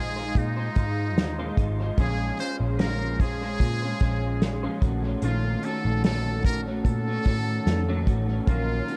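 A buzzy, metal-muted trumpet with vibrato and scooped notes sings a wistful pop melody through analog chorus and dub echo over an up-front, slightly broken-up, compressed electric guitar with ensemble chorus, warbly pitch drift and its own dub echo, plus a dark, foam-muted, round picked bass, all drifting through Ab69, Bbm9 and F7b9b13/Bb chords at a hazy 74 BPM with swung 16ths; an acoustic kit played with bundle sticks and coloured by 12-bit sampler grit enters at 0.4 s, and detuned sawtooth keys with a filter sweep and chorus slip into the background at 8.4 s in this echo-heavy, small-room bedroom pop excerpt cut from a longer piece.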